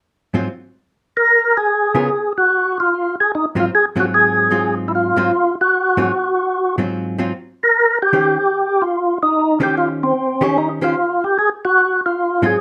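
Jazz with a greasy, swinging mood, this short excerpt cut from a longer piece moves at a brisk pace with a moderate swing on the eighth notes. A hollow-body jazz guitar starts at 0.3 seconds as accompaniment, its clean, picked tone dark and compressed, sitting up front in the mix. At 1.2 seconds a percussive tonewheel organ takes the melody, fat and lightly overdriven, with second-harmonic percussion, audible key click, chorus vibrato and a slow rotary speaker giving it movement. The organ stands somewhat louder than the guitar, while the harmony leans on rich dominant thirteenth and sixth chords. A wet studio reverb surrounds the pair, and the rough home-demo mix keeps the sound loose.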